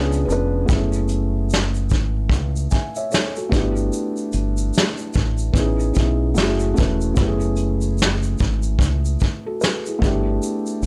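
Light reverb softens this hazy, melancholic lo-fi hip hop excerpt, which swings at 74 BPM in 4/4 over lush chords such as F#m11, G69 and Amaj9#11. A felt-muted upright piano, mellow and intimate with thick felt, audible action noise, cassette tape coloring and a low-pass filter, opens with a brief fill before settling into accompaniment, while a deep dub fingered electric bass sits up front with a round, dark tone. From 0.1 s a vintage brush drum kit adds hi-hat, shaker, a punchy kick and a medium-tuned snare, sounding distant and roomy with a rolled-off top and gritty 12-bit sampler texture.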